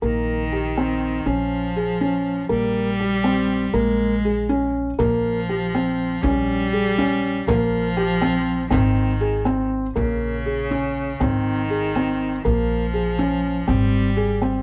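Contemporary chamber music in an urgent, restless 5/8 at 242 BPM in Bb dorian, where a felt-muted upright piano plays soft, dark, intimate arpeggios up front, a bright, biting bowed cello with vibrato carries an intense second line, a woody pizzicato upright bass anchors the low end, and a deep, saturated frame drum enters in the background at 5.0 s, all captured with close, detailed microphones and light reverb in this short cut from a longer piece.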